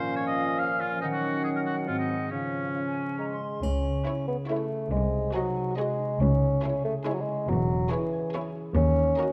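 A dark bassoon sits up front throughout this playful, whimsical film cue in a three-beat metre, its smooth-topped accompaniment joined by a concert harp playing ringing, fingerpicked arpeggios. At the opening, a clear oboe, an airy, hollow silver flute and a distant, roomy clarinet each carry second lines over sustained chords from a mellow French horn section. These winds and horns fall away by 3.6 seconds as the harmony shifts, and a focused cello section and an intense double bass section take up the bass, with a brief touch of bright triangle. From 4.1 seconds, chamber strings settle in the background: a rich, vibrato-laden violin section carries the melody, a second violin section adds another line, and a distant viola section fills in accompaniment. The magical, quirky mood sits in a moderate scoring-stage reverb with a layer of vinyl crackle, and the cue is cut from a longer piece.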